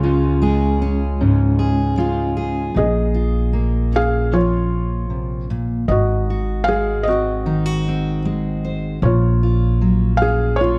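A felt-muted upright piano sings a soft, mellow melody over a fingerpicked, full-bodied steel-string acoustic guitar with fresh strings, a woody, thumpy pizzicato upright bass on gut strings, and slightly broken-up electric guitar arpeggios shimmering with harmonic tremolo. This heartfelt, intimate folk-pop ballad moves at 77 BPM in a straight 4/4, and the electric guitar drops out at 2.8 seconds as the harmony shifts from Db to Bbm7, Ab7 and Gbmaj7/Bb. The piano's action noise stays close and audible in a dark production with light reverb, in this fragment cut from a longer piece.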